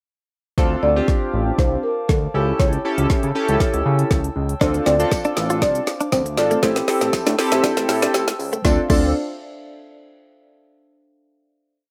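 A deep house drum kit with a deep kick, woody snare and smooth hats drives this confident, driving dance-pop piece in D minor at 119 BPM, joined by a glossy chorused synth bass playing a syncopated line with ghost notes and slides, a retro chorused polysynth pumping syncopated close-voiced chords, a buzzing soft-mallet marimba carrying a mellow motif-based melody through tape echo, and an ethereal glass harmonica pad in the background, while a clean direct-recorded electric guitar adds a muted single-note riff from 4.6 seconds and a very quiet jingly tambourine marks the backbeat from 5.1 seconds, all building with a drum fill and filter sweep over Dm7, A7/C#, Dm7 and Am7 in a rough home-demo mix before a final Dm7 chord at 8.6 seconds.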